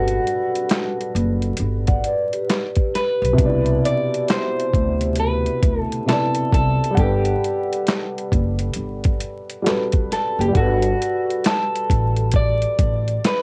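Over a swung 67 BPM boom bap groove of thumpy kick, high-tuned snare, handclaps and hi-hat from a gritty, pitched-down, cassette-worn sampler kit, this cosy, dreamy lo-fi hip hop excerpt in G major drifts between Gmaj9 and Cmaj9 as a slightly broken-up electric guitar carries the filtered, tape-soaked melody with analog delay, a dark, slightly detuned upright piano with audible action noise adds mellow accompaniment, a woody pizzicato upright bass sits up front, and a soft-mallet vibraphone with slow motor vibrato rings briefly from 1.9 to 3.3 seconds, all wrapped in light reverb and vinyl crackle.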